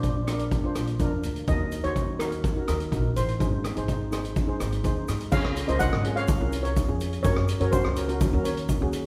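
Sunny and carefree, this short calypso excerpt moves at 125 BPM in a straight 4/4 feel in Db major. Two double-seconds steel pans carry the music throughout: one plays the melody between Gb4 and Gb5 with soft rubber sticks for a mellow, airy shimmer, while the other accompanies in a darker, smoother voice struck with medium rubber sticks, and a brief steel pan fill arrives from 0.8 to 1.5 seconds. Beneath them, a pizzicato upright bass with steel strings gives a woody, dark low end, and a warm street-band drum kit sits up front with a boomy kick, rim clicks, hi-hat and dark crash cymbals, its top rolled off. An egg shaker adds a grainy, bright texture in the background. The chords move from Bb through Ebm and Ab, then into a second section at 5.3 seconds that opens on Dbadd9 and passes to Gb, all heard from further back in a concert hall with a moderate reverb.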